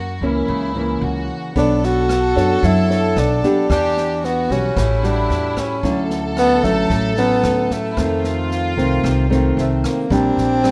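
A breathy, close-miked tenor saxophone with vibrato and scooped notes carries the melody up front in this sunny, breezy bossa nova fragment at 112 BPM, over thumb-plucked nylon-string guitar, a woody, thumpy pizzicato upright bass and a smooth, reedy bowed violin section playing a second line, while an open jazz drum kit with boomy kick, rim click and snare joins at 1.6 s, set in light reverb as the chords move from F#7 through Bm9 and Dmaj9 to Bb69.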